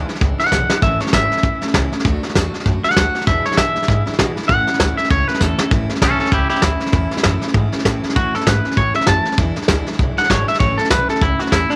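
A twangy, clean electric guitar with tape echo carries the melody up front from the opening in this rowdy, rollicking swung rockabilly excerpt, backed by a bright picked steel-string dreadnought, a woody, thumpy pizzicato upright bass and a soft brush kit with a tight kick and rolled-off top that adds fills at 0.5 and 5.4 seconds before the guitar breaks into a solo at 5.7 seconds, all set in a studio reverb.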